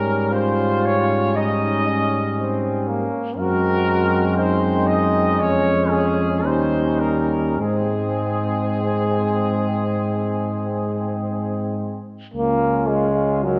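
Unhurried and rubato in 4/4 at roughly 49-60 BPM, this serene, tender hymn-like classical passage for brass band in Ab major is cut from a longer piece, its up-front trumpet section carrying a mellow, vintage-toned melody with light vibrato until 11.7 s while a distant flugelhorn sings a second line with vibrato behind it. A bright solo trombone with a soft attack and a roomy, tight trombone section fill in the accompaniment, and a close-miked tuba anchors the bass up front, all resting in the wet reverb of a scoring stage. Chords pass from Eb7/Ab through Ab7/Gb, Db/F and Eb7 to a settled Ab, and the harmony turns to Db as a brief new section begins at 12.3 s.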